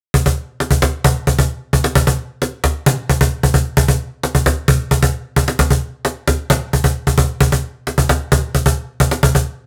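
A rough rehearsal-room recording with warm saturation and a wet studio reverb frames this dark, brooding rock fragment at 132 BPM in a straight 4/4, where a snappy acoustic cajon with snares, struck with hard hands and placed close, dry and up front, carries the whole passage from 0.1 to 9.5 seconds.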